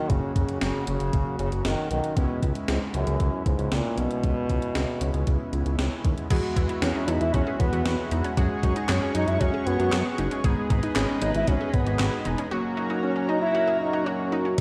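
Played back through a big sound system in a bare room, this bright, nostalgic synth-pop fragment sits in a light reverb with a large studio ambience around it. A distant, roomy French horn carries the melody in a classical solo style, its line trailing tape echo. Beneath it, brassy analog synth brass with chorus, vibrato and a filter sweep holds the accompaniment, while a fat, saturated sawtooth bass and a gated 80s digital drum machine sit up front, with a thumpy kick, gated reverb snare, handclaps, hi-hat and crash cymbal. At 6.3 seconds the music moves into a new section as a shimmering, retro pulse-width pad adds sustained chords with a slow attack. At the same moment a round, detuned analog pluck begins arpeggios in the background, colored by chorus and tape echo. The chords shift from F# and C#m7 to Eadd9, F#sus2 and G#m before landing back on F#.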